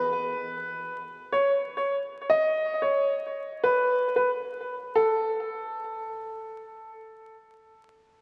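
Soaked in a lush hall reverb and dusted with vinyl crackle, this dreamy, dark and tough hip hop fragment at 91 BPM in 4/4, tuned to A4 = 442 Hz with a swung 16th-note feel, centers on an up-front, woody and vintage-toned upright piano that carries a smooth, long-sustaining melody in a narrow upper range, filtered and touched with delay, from the start until 6.9 s, with a new section arriving at 5.0 s.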